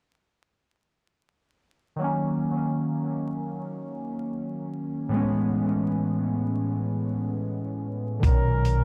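Warbling, nostalgic synth keys open this mellow, cosy lo-fi hip hop excerpt at 2.0 seconds, floating in free time through D#m7 and Amaj7 chords, coloured by chorus, phaser, cassette tape character, a low-pass filter and dub echo. The keys sit up front with a fast attack and decaying tone, blending triangle and sawtooth shades under a filter sweep. At 8.2 seconds the harmony moves to Bmaj9 as a woody pizzicato upright bass and a thumpy, sampler-style soul drum kit arrive together, the kit's kick and hi-hat carrying vintage 12-bit grit. Moments later a breathy flugelhorn slips in with a whispered, intimate jazz line, soft in attack, touched with vibrato and rounded by its own low-pass filter. Light reverb, small room ambience, an echo-heavy mix and vinyl crackle wrap the piece in a dusty, homely glow.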